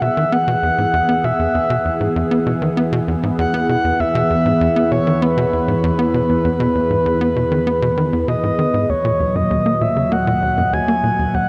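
Ambient, sequencer-driven space music at 98 BPM in a straight 4/4, with a mysterious, cosmic mood, taken from a longer piece. Up front, a breathy, flute-like synth lead carries the melody with a soft attack, vibrato and tape echo, floating over a swirling, phased analog pad that holds sustained, detuned chords. Beneath them, a tight sequencer bass drives a punchy riff with a filter pluck, fast attack and its own tape echo, while an analog drone on E hums in the background until 8.9 seconds. The harmony rests on E before shifting to E-flat minor at that point for a brief second section. A huge, wet reverb with a long tail surrounds the recording, giving it a vast, spacious depth.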